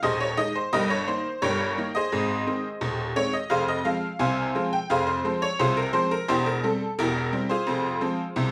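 A tack piano carries this cheerful, jaunty ragtime fragment alone, its metallic, jangly tone sitting up front with a vintage character. The instrument sounds percussive and bright, spanning from a deep Eb1 up to Ab5. The harmony moves through Ab, Eb/G, Fm and C/E, settling on Fm at 7.7 seconds before the 8.5-second clip ends. A wet studio reverb with a short 0.5-second decay surrounds the keys, and the sound has the natural feel of a live performance in a single space. In a straight 2/4 metre, it is a lively slice of a longer piece.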